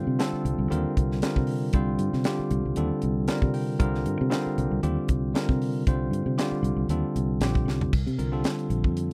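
A bright, clean, bell-like tine electric piano sits up front in this driving, funky electric jazz fusion cut from a longer piece, accompanying over a C9sus4 chord and adding a short fill at 3.0 seconds. Beneath it, a dark, round fingered electric bass with a foam-muted, direct and amped character holds the low end, while an acoustic funk drum kit with a high-tuned snare and tight kick comes in at 0.2 seconds and plays a fill at 7.7 seconds. The sound is a dry, close 1970s-style studio recording with a light sixteenth-note swing.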